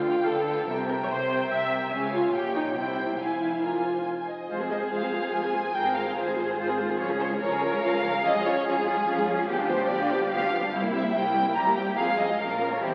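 An up-front, rich-toned viola section anchors this quick, dramatic classical-period movement for string orchestra in F minor, bowing an even, smooth accompaniment at 144 BPM in a straight 3/4. Above it, one violin section carries the melody with a soft attack, portamento and expressive vibrato, set back and lush in the blend, while a second violin section plays a close, polished second line. The cello section supplies a distant, expressive bass, and the double basses add a low, focused foundation deep in the mix. After an urgent opening phrase, a second section begins at 4.5 seconds and drives the harmony through Db and dominant chords, reaching F minor at 12.0 seconds before moving to Bb minor as the excerpt ends at 12.9 seconds. The whole ensemble sits in a reverberant scoring-stage ambience, heard through the crackle of a very old 78 rpm record, in a short cut from a longer piece.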